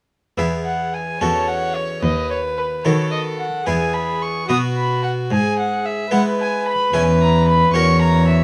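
At 0.4 s a dark, nasal violin takes the melody over a bright, French-style harpsichord and a rich cello bass set up front, opening a serene, radiant baroque-style sonata movement in E major, in 6/8 at 74 BPM with a rubato feel. A second violin, close and full-bodied, adds an inner line from 1.2 s, and all three bowed strings share a reedy, gut-string, period-style tone. Light reverb surrounds the dusky, mellow production of this passage cut from a longer piece.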